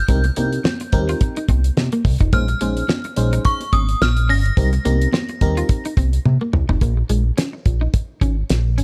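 A small-room ambience frames this slick, funky slice of early-eighties boogie funk in Bb dorian at 107 BPM. Swung sixteenths ride a dry, dark 70s drum kit with a fat snare and tight kick up front, beside a glossy, pulse-width-modulated synth bass. A clean, compressed semi-hollow guitar riff with lush chorus runs throughout, while a bell-like FM electric piano and an inharmonic, ringing synth chime melody shimmer above until 5.9 seconds, with soft, high-tuned congas in the background; a drum fill at 6.3 seconds leads into a closing passage where the harmony moves from Cm7 and Bbm11 onto Bbm7.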